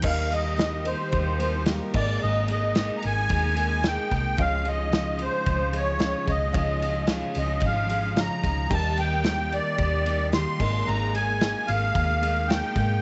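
A steady, straight 4/4 pulse drives this hopeful, nostalgic slice of folk rock and heartland rock, taken from a longer piece. A loose indie drum kit sets the groove with a punchy kick, a medium-tuned snare, dark ride and crash cymbals, and a pumping room sound with a rolled-off top. A dark, round hollow-body short-scale bass, picked and amped, sits up front beside the lead: a reedy musette accordion carrying the melody, given a shimmering quality and a slapback echo. A bright, twangy, compressed twelve-string electric guitar plays a clean riff, while a very quiet, full-bodied twelve-string acoustic guitar adds octave-doubled picking and a worn, woody, slightly detuned upright piano sits far back in the accompaniment. The harmony moves from Eb through Absus2 and Dbadd9 before returning to Eb and Absus2, all in light reverb with a studio ambience.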